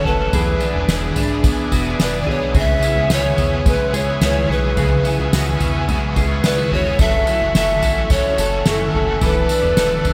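A straight 4/4 pulse at 108 BPM comes from a soft-mallet drum kit, up front, with a boomy kick, fat snare, tambourine and toms in a big acoustic room, entering at 0.1 s together with a chorused synth bass. This is a haunting, hazy dream pop fragment cut from a longer piece. An airy, close-miked pan flute carries the melody between A4 and E5, its crisp chiff and unsteady straight tone trailing into digital delay. Beneath it, a twangy clean electric guitar picks arpeggios through subtle chorus and delay, while a double-tracked cranked stack guitar adds overdriven accompaniment shimmering with harmonic tremolo and ensemble chorus. A reedy tonewheel organ holds sustained chords in the background through a slow rotary speaker, and the glossy, nasal bass blends pulse and sawtooth tones with pulse-width modulation. The harmony moves from E7 to C#m7 and F#m7, arriving on E7sus4 at 9.2 s, all bathed in a lush 2.6-second hall reverb with bright 1980s-style digital polish.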